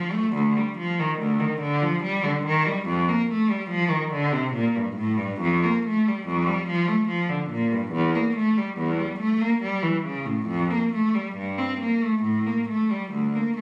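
Captured on a phone in a room with a light club reverb, this brief cut from a longer baroque-style suite movement presents a single bowed cello, rich and up front, playing a solemn, flowing line in an unevenly pulsed three with rubato, coloured by expressive vibrato and portamento across its 13.6 seconds.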